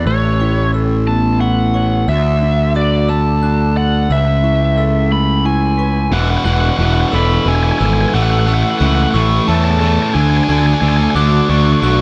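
A steady 6/8 pulse drives this hopeful, euphoric rock passage, cut from a longer piece, where a biting, overdriven lead guitar carries the melody through tape echo over punchy fuzz bass up front, lo-fi, slightly broken-up arpeggios from a guitar through a small old amp and bell-like glockenspiel arpeggios ringing softly in the background, until a bright distorted guitar riff enters at 6.1 seconds to start a build-up, all within a dark production and light reverb.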